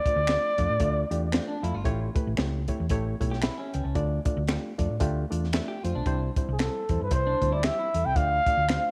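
A breathy, whispered trumpet with slapback echo opens this urgent, driving excerpt of uptempo 1960s-style soul, swung at 114 BPM over a Dm, A7 and C progression. A reedy, lightly overdriven electric piano, a compact cocktail drum kit with a punchy kick and high-tuned snare, a round hollow-body bass and soft finger snaps carry the groove, and a slightly broken-up electric guitar riff bathed in spring reverb enters at 1.3 seconds. The intimate, close-miked trumpet falls silent at 1.6 seconds and returns at 6.5 seconds, up front in a small room with light reverb.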